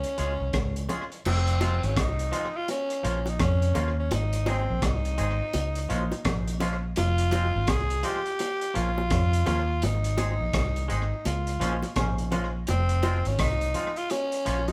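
Laid-back and serious, this roots reggae excerpt in F minor moves at 84 BPM with a swung sixteenth-note feel, led by a raspy, scooped tenor saxophone up front over a round, foam-muted fingered bass and a crunchy, saturated breakbeat kit with dark cymbals, a tight kick, rim clicks and tape echo. A clean, twangy electric guitar joins at 0.2 seconds and low-tuned, close bongos with tape echo enter at 0.9 seconds in the background, while the band hits an accent from 9.8 to 12.7 seconds, when a brief trombone section with light vibrato plays a second line from 11.6 seconds. The chords cycle through Db, Fm, Bbm and Ab in a single room with light reverb, captured live.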